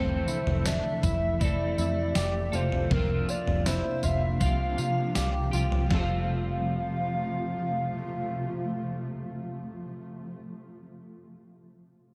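Dreamy and blissful, this short dream pop passage drifts in a straight 4/4, cut from a longer piece. A warbling, nostalgic lead carries the melody with a soft, detuned square-and-sawtooth tone, its vibrato thickened by chorus and tape echo. Beneath it, a clean, picked electric guitar with tremolo and analog chorus plays accompaniment, while a second electric guitar at the edge of break-up adds compressed arpeggios through ensemble chorus and tape echo. A granular cloud pad holds blurred, evolving chords with a slow attack and long release, and a foam-muted, round picked bass sits dark and amped underneath. An up-front gated 80s drum machine, with thumpy kick, gated-reverb snare, tambourine and toms, plays from 0.3 to 6.1 seconds, the harmony moving from Am/F through Bbadd9/F and Csus4 to settle on F at 5.9 seconds, all bathed in a lush hall reverb.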